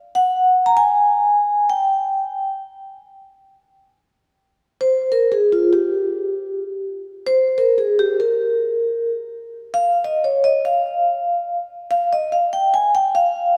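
A vibraphone played with soft mallets enters at 0.2 s and carries this nocturnal, smoky hip hop passage alone, taken from a longer piece. It sits up front in the mix, with a mellow, ringing tone, a metallic edge and a medium motor vibrato, moving between F4 and Bb5. The tempo is 97 BPM in 4/4, with a 64% swing on the sixteenths, and the tuning sits slightly low at A4 = 438 Hz. From 4.5 s the music settles into F minor for a second section that runs to 13.6 s. A wet plate reverb with a 2.5-second tail soaks the dreamy mix, letting each struck note hang in the air.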